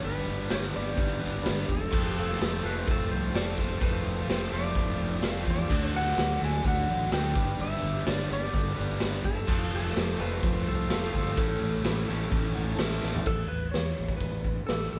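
A sunny, confident classic rock passage, cut from a longer piece, opens with the whole band playing together live in one room. A clean lap steel guitar carries the melody with a dark, compressed slide tone and volume swells, over a very quiet, reedy electric piano shimmering with fast tremolo. Two overdriven guitars drive the riff: a bright, picked stack guitar and a sludgy, distorted partner sitting in the background. A fingered electric bass anchors the low end with a warm, amped tone. The raw garage drum kit sits up front with a punchy kick, gritty saturation and a pumping stone-room sound, while the chords move through G, F, D and back before landing on A. The electric piano adds a fill at 12.3 seconds, the drums fill at 13.0 seconds, and both overdriven guitars drop out at 13.3 seconds as a short new section begins under moderate reverb.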